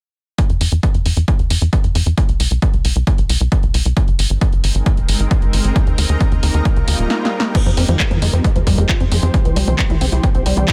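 Uplifting trance with a soaring, euphoric mood, built on a punchy, tape-warm kick and a punchy analog drum machine of snare, handclaps, hi-hat, toms and crash, a tight, nasal sequencer bass pumping up front under a filter sweep, a shimmering, ethereal pad of detuned sines arriving at 4.7 seconds, and after a brief swell and drum fill, a squelchy, resonant acid bass arpeggio with lush chorus and delay entering at 7.5 seconds.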